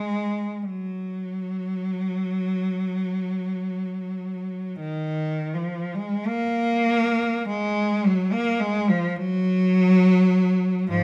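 Rubato and free-flowing in 4/4 at a slow 34-54 BPM, this nostalgic, lyrical classical fragment in F# major features a single bowed cello playing unaccompanied, rich and focused with vibrato, sitting up front between G#2 and A#3 in a moderate recital hall reverb captured by close, detailed microphones, and shifting into a new section at 6.3 seconds before it is cut off at 11.0 seconds.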